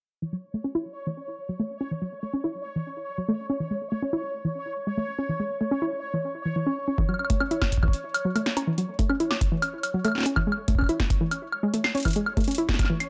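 Cerebral and glitchy, this IDM excerpt runs at 142 BPM in a straight 4/4, opening on a warbly, dusty pluck that spins dark, nasal arpeggios through chorus and analog delay while a filter sweep moves across it. Alongside, a bubbling sawtooth texture steps randomly through a resonant filter, sustained and pumping against the beat with chorus and reverb. At 7.0 seconds a deep, tape-warm kick arrives up front, joined at 7.1 seconds by an analog drum machine with a punchy snare, metallic hi-hats and woodblock, all set in a dry, gritty digital ambience.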